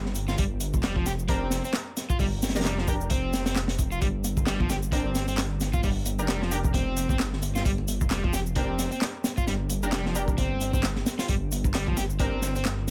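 A dark, rumbling detuned saw bass opens this energetic, funky 132 BPM breakbeat cut in G minor, joined at once by a crunchy, saturated breakbeat kit with a punchy kick and high-tuned snare, layered electronic shaker and handclaps, and an overdriven semi-hollow guitar riff roughened by 12-bit sampler grit and dub echo. A bold, bright orchestra-hit-like synth stab with its own reverb sits in the background from 1.3 seconds, and very quiet, ringing congas slip in at 4.2 seconds over a dry mix.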